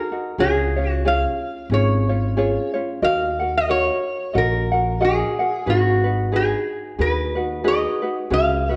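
A relaxed 4/4 swing at 91 BPM, with the eighth notes lightly swung, sets an easygoing Hawaiian lilt in this sunny, dreamy excerpt cut from a longer piece, tuned to A4 = 437 Hz. A metal-body resonator slide guitar carries the melody up front, its metallic, nasal tone shaped by fingerpicks and a slide. Beside it, a light, fingerpicked acoustic ukulele supplies the accompaniment from the very start. An upright bass with steel strings joins at 0.4 s, plucked pizzicato with a woody tone in a low register. The harmony moves from C# to D#m and then to G#m7 at 5.7 s. A moderate recital-hall reverb gives the trio some air, while a worn, warbling old-cassette quality adds a drifting, wobbly pitch to the sound.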